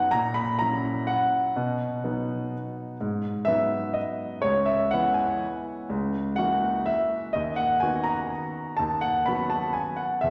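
Classical piano waltz in 3/4 at 124 BPM, with an elegant, graceful mood and a rubato feel that lets the time breathe. A solo concert grand carries the entire passage from 0.0 to 10.3 s, spanning C#2 to B5, its tone smooth and vintage-tinged, with a deep bass and an up-front presence. The harmony opens on F#7/A# and settles into B major by 3.0 s, then moves through G#m7, C#m7 and F#7/C# before landing on B/D# at 7.3 s. A wet concert hall reverb with a 2.3-second decay surrounds the instrument, giving it a spacious, resonant glow. This short passage is cut from a longer piece.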